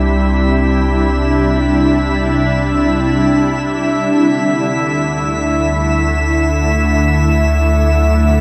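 Ambient in free time and C major, this serene, peaceful excerpt from a longer piece sets a pure, organ-like pad holding sustained chords up front with ensemble chorus and shimmer reverb, over a round, deep analog bass, while a glassy texture of drifting overtones floats above with chorus and shimmer, all in a huge, wet reverb as the harmony moves from C to Dadd9 at 4.2 seconds.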